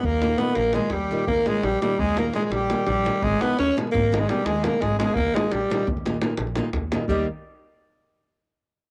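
Balkan folk in the manner of a Balkan wedding band, this fiery, virtuosic excerpt races at 341 BPM counted in eighths, in a straight 11/8, moving from Eb to Abm and back to Eb. A raspy, growling alto saxophone plays the solo melody up front, close-miked and jazz-inflected, with scooped notes, light vibrato and a cassette-tape grit, while a reedy accordion carries a second line in the background from a boxy small room. Beneath them sit a woody pizzicato upright bass on steel strings, a deep, band-limited vintage davul, and a fingerpicked flamenco guitar that enters at 0.2 s with audible finger squeak, all in a home cassette recording with light reverb.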